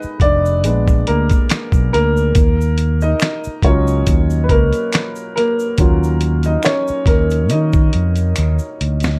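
Smooth and late-night, this neo-soul R&B piece moves at a slow 70 BPM in Eb minor with a light 16th-note swing, passing from Fm7b5 through Bb7b9 to Ebm9 as a woody upright piano takes a solo across the whole 9.2 seconds. A gritty, compressed sampler-style drum kit enters at 0.2 seconds with a thumpy kick, fat snare, hi-hat and handclaps, and lands a drum fill at 8.4 seconds, while a growly, punchy fingered electric bass sits up front beside a faint tube shaker and finger snaps heard in a live room. The production is dark and dry, with little reverb.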